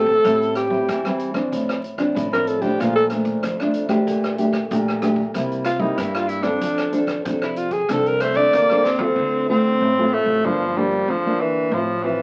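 Sunny and festive, this short cut from a longer samba-choro piece opens with a breathy, close-miked alto saxophone carrying the melody with vibrato and subtone, over thumb-plucked classical nylon-string guitar, a woody pizzicato upright bass and a swinging big-band drum kit with punchy kick and rim clicks. After a drum fill at 8.9 seconds, a whispered, intimate tenor saxophone takes the solo from 9.2 seconds with scooped notes and a soft attack. A small, wet room and the crackle of a very old 78 rpm record give the sound a vintage glow.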